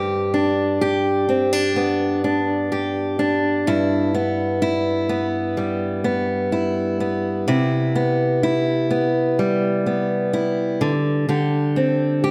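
A straight 4/4 pulse at a slow 63 BPM carries this longing, heartbroken pop fragment, where a lone fingerpicked steel-string acoustic guitar, warm and up front, spans G2 to G4 and moves through G, Em/G, Cmaj7 and D7sus4 across two matching passages, the second beginning at 7.5 seconds, all set in a moderate concert hall reverb with a 2.1-second tail before the 12.3-second cut.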